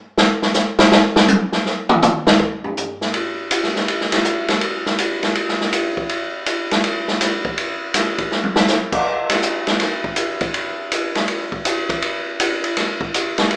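A swung 4/4 pulse at 162 BPM drives this cool, searching jazz excerpt, with the eighth notes lightly swung. An open acoustic jazz drum kit carries the whole piece, entering at 0.2 seconds with a short solo passage before the groove settles in after 3.1 seconds. Ride and crash cymbals, hi-hat, snare, toms and kick all come into play, and a brief fill arrives around 8.3 seconds. The kit sits up front with a natural, close feel: the cymbals are dark, the snare is medium-tuned and the kick has a boomy weight. A moderate studio reverb gives the sound some air, while the overall recording has the boxy character of a small speaker, like a band playing live together in one room.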